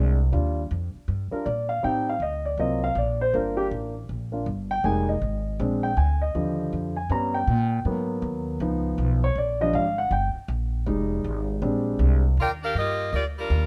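A dark, mellow concert grand piano carries this joyful, brassy big band swing passage, taking a solo from 0.3 seconds that runs to about the 12.2-second mark. Its deep bass and natural tone sit up front over a swung 4/4 feel, moving through rich jazz harmony such as major ninth, half-diminished and thirteenth chords. An upright bass played pizzicato supports it throughout, with a woody, thumpy sound from its steel strings placed close in the mix. At 12.4 seconds a tight saxophone section takes over the melody with an edgy bite, a soft attack and light vibrato in classic jazz style. Light reverb gives the ensemble a modest sense of space in this passage cut from a longer piece.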